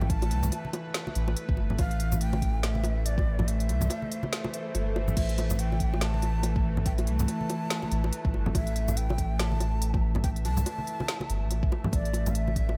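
Cavernous and meditative, this half-time deep dubstep excerpt sets a breathy, bamboo-toned shakuhachi melody with dub echo over a tense, string-like bowed drone, a round, up-front sub bass, dry, close congas and bongos, a produced deep house kit with a woody snare, smooth hats, shaker and crash, and a deep electronic kick that drops out from 3.5 to 5.2 seconds while a very quiet electronic swell sounds from 4.6 to 5.2 seconds, all in a light digital ambience.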